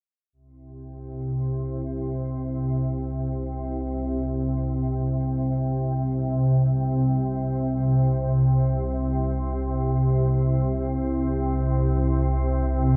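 At 0.7 s a calm, nasal, organ-like drone of detuned unison sine and triangle tones swells in from a slow attack and sustains up front between C2 and C3 with ensemble chorus and built-in reverb, in a cavernous, ominous ambient fragment in free time, tuned to A4 = 441 Hz and washed in a huge ambient reverb with a 7.3 s decay and the warbly pitch drift of worn cassette tape.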